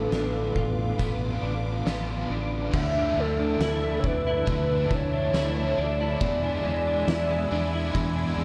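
Floating and blissful, this dream pop excerpt drifts at 69 BPM in a straight 4/4, cut from a longer piece. A warbling, nostalgic synth lead carries the melody between A4 and E5, its detuned triangle and sawtooth tones softened by vibrato, portamento, chorus and delay. Beneath it, a clean, picked electric guitar spins dark arpeggios through ensemble chorus and delay, while an overdriven electric guitar adds compressed accompaniment shimmering with tremolo and lush chorus. A swirling, evolving analog pad holds sustained chords under phaser and chorus, and a fingered electric bass anchors the low end from A1 to E2. An oversized, low-tuned drum kit with a fat snare, boomy kick, tambourine and cymbals sits gritty and rolled-off in the background from 0.1 to 8.2 seconds, as the harmony moves from Dm6/A to Dmadd9 at 2.7 seconds and E7 at 6.2 seconds within a dark production touched by light studio reverb.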